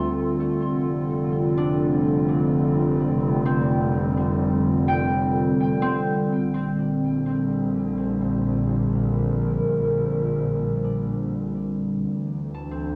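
Reflective and serene, this ambient excerpt in 3/4 pairs a warbling, detuned tape-like pad of dark sustained chords with a bowed double bass section whose tone is clear and focused with vibrato, while a fingerpicked concert harp rings out in arpeggios through tape echo and fades in from 6.4 s, the harmony drifting from Dm7 through F to Bb inside a lush hall reverb and the nostalgic, lo-fi grain of a home cassette recording.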